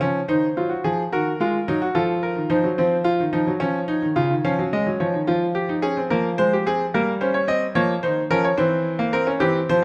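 Set in a moderate recital-hall reverb, this solemn, serious excerpt from a baroque-style classical three-part fugue in 12/8 at 72 BPM features a clear, smooth, vintage-toned solo grand piano with short sustain, placed up front and tuned to A4 = 438 Hz, moving through shadowed harmonies from Cdim/Eb and Fm to a closing C7/E.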